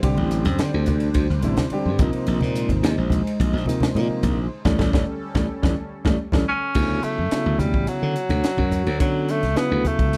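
Electric jazz fusion with a slick, bright mood, where a growly slap bass and a crisp drum kit with bright cymbals and a punchy kick sit up front over warm piano chords, low-tuned congas and a swirling phased pad that fades at 6.7 seconds, as a band accent and drum fill lead into a clear tenor saxophone solo with light vibrato and scooped notes from 6.5 seconds.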